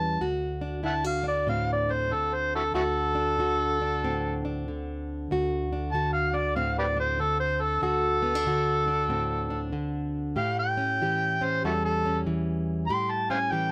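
A swung 4/4 at 95 BPM carries this gritty, soulful acoustic country blues in D mixolydian, where an overdriven, amplified harmonica takes a jazz-style solo from 0.2 seconds with light vibrato, tongue slaps and scooped notes over a fingerpicked, plugged-in old ladder-braced acoustic guitar whose woody, boxy tone and old strings sit up front, moving from D7 to A7 at 10.4 seconds in light reverb.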